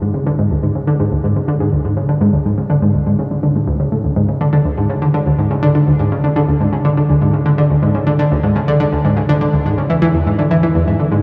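The rhythm sits in a straight, steady 4/4 pulse, giving this ambient excerpt a calm, measured footing. A solo analog pluck carries the whole passage from 0.0 to 11.2 s, working in a low register between D2 and E3. Its tone blends sawtooth and square waves over a sub octave, with a fast attack, short decay and a filter pluck that make each note round yet bright, placed up front in the mix. Chorus and tape echo colour the synth, and a cathedral reverb with a 6.2-second tail, along with a touch of small-room ambience, soaks the sound in a dreamy haze. The mood is cosmic and luminous, like a single glowing voice drifting through a vast, resonant space.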